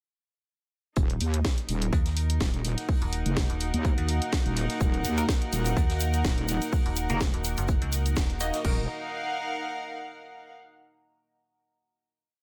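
A gritty, swaggering bass house track in Eb minor at 125 BPM opens at 1.0 s straight into the drop on an Eb minor chord. A punchy four-on-the-floor kick with crash and a cracking programmed snare and hats, both tape-toned, sit up front, while a distant, roomy looped breakbeat from a swinging big-band kit murmurs very quietly beneath them with a 16th-note swing. A heavy, saturated wobble bass carries modulated phrases with changing wobble speed. It is soon joined by a metallic, overdriven FM bass playing chopped phrases. A dark, moody analog pad holds sustained chords in the background, and a close, bowed string section, soft and floating, drifts through slowly shifting chords, both breathing with sidechain pumping. Later a grainy, bright egg shaker adds hand-played sixteenths at 4.8 s, and a nasal, band-passed chord stab brings sparse, phased, tape-echoed hits moved in parallel. Everything but the strings stops by about 8.9 s, leaving them to ring out as the final chord in a small room.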